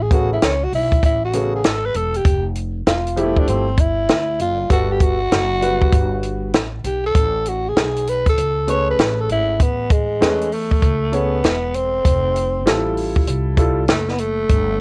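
A growling, breathy tenor saxophone with scooped notes and vibrato solos up front from the first second over a dark, steel-string pizzicato upright bass, joined almost at once by an intimate upright piano with audible action noise and a dry, compact cocktail drum kit with a high-tuned snare and tight kick, both piano and drums carrying a cassette-tape tint, in this relaxed, cool jazz-hop cut taken from a longer piece at 98 BPM with a swung 16th-note feel in A major, moving through Amaj9, Fmaj9 and Gmaj9 chords in a light reverb, the kick muted from 8.4 to 9.6 seconds before the solo gives way to a new section at 9.6 seconds.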